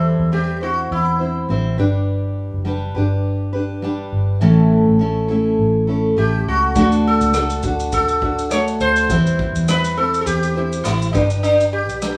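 A lightly swung 16th-note groove at 103 BPM in 4/4 carries this easy-going, heartfelt acoustic pop excerpt in D major, where an up-front, full-bodied picked steel-string acoustic guitar with audible finger squeak plays throughout over a dark, round, foam-muted vintage electric bass, a buzzing, shimmering sitar with sympathetic strings voices the melody briefly at the start and returns at 6.2 seconds, and a soft brush drum kit with tight kick, rim click and shaker joins at 6.8 seconds, all captured as a band playing live in one studio room with moderate ambience.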